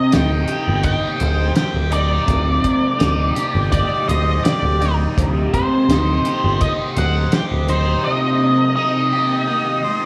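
A trippy, dark psychedelic rock fragment in a straight 4/4 opens on a bright, overdriven, double-tracked stack guitar riff colored by phaser and analog delay, while an octave-fuzz lead guitar sings a warm, distorted melody through its own delay over a Cm/D harmony. An up-front picked electric bass and a cloth-damped, thuddy drum kit, with its fat snare, tight kick, hi-hat, gritty saturation, rolled-off top and echoing delay, join almost at once and drop out near 7.8 seconds, leaving the two guitars ringing until the cut at 10.1 seconds. The echo-heavy mix sits in a small, lightly reverberant room.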